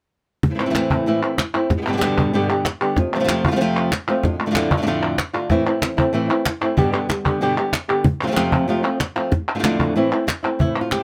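The rhythm is a straight 4/4 at a brisk 189 BPM, driving this intense, mournful flamenco fragment in A minor, tuned to A4 = 444 Hz. A fingerpicked flamenco guitar carries the melody up front, its finger squeaks audible, while a second, thumb-plucked guitar sits in the background playing stabs, both spanning F2 to G4 with a warm acoustic tone. A woody cajon with faint snares plays close and up front, and crisp palmas hand claps, compressed and saturated, join at 0.6 s. The harmony moves through Am, G, F and Dm/F, then repeats Am, G and F before Dm and a return to Am at 10.0 s. Close, detailed microphones and very little reverb keep the sound dry and immediate until the parts stop at 11.0 s.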